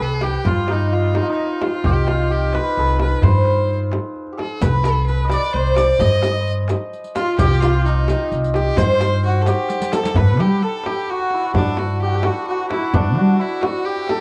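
A shimmering, hammered santur carries the melody up front in this stately Persian modal ensemble piece, set at 86 BPM in a straight 6/8. A clear, biting solo violin with light vibrato traces a second line alongside it, both tinted by cassette tape and plate reverb, while a woody pizzicato upright bass anchors the low end and a small, saturated frame drum and a deep, very quiet tombak keep time, joined at 4.6 seconds by the bright jingles of a riq in the background. A drum fill at 9.7 seconds leads into a shift from C avaz esfahan to G dastgah mahur at 10.2 seconds, lending this warm home cassette recording, cut from a longer piece, a fresh modal color.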